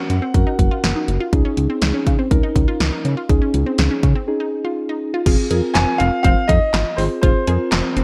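A concert grand piano carries the melody at the very start, alongside muted, felt-like synth keys and a lush, detuned unison pluck spinning arpeggios, with echoes of digital delay on the piano and pluck and a soft chorus on the keys. Almost at once a punchy house drum kit and a glossy, dark chorused synth bass enter. The result is a cool, melancholic synth-pop piece at 122 BPM in a straight 4/4. The layered electronic drums sit up front in gated reverb, with bright hats, handclaps, crash cymbal and a punchy snare. The chords move from Gb to Dbsus2 and later settle on Fm, with a break between 4.3 and 5.3 seconds. The piano drops out after the opening second and returns at 5.7 seconds, its warm, deep tone set in a digital ambience as the excerpt ends at 8.0 seconds.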